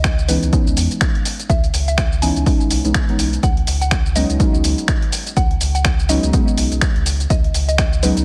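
A lightly reverberant, late-night deep house excerpt at 124 BPM with a hypnotic swing, moving from C#m9 to B6 at 3.4 s. A punchy, dry overdriven electronic kick runs until 7.9 s beneath a gritty, compressed sampler-style kit of finger snaps, hi-hat and shaker in a small room. A deep sine-and-triangle sub bass with its octave and soft, detuned chord stabs both pump against the sidechain, the stabs carrying chorus, cassette tape colour and a diffuse ambient delay, while a woody, round FM mallet pluck sits in the background with chorus, phaser, 12-bit sampler grit and the same hazy delay.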